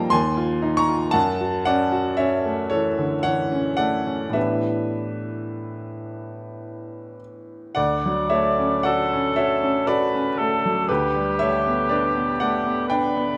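A mellow cor anglais with light vibrato enters at 7.8 s to sing a luminous, dreamy melody over a clear baby grand piano, whose action noise is audible and which has carried the harmony alone from the start, in this slow, rubato impressionist classical fragment in 3/4 and D major at 51-61 BPM, drifting from Ebsus24 and F#m7 to a Dmaj7 and Gadd9/D close within a moderate large studio reverb.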